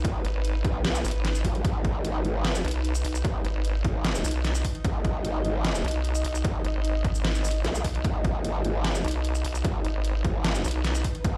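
A heavy, chaotic wobble dubstep excerpt in G# minor at 150 BPM with a half-time feel opens on a low G# minor chord: a growling, aggressive bass and a nasal, resonant vowel-sweep wobble bass, both formant-filtered, saturated and chorused, sit up front in the G#1 to B1 range. Beneath them, a punchy, overdriven electronic kick and a dubstep kit of hi-hat, shaker and deep snare drive the groove, both re-recorded in a large room. High above, a cloudy, blurred granular pad drifts between D#4 and D#5 with its own reverb and sidechain pumping, and the whole piece rings out as if played on a big sound system in a bare room.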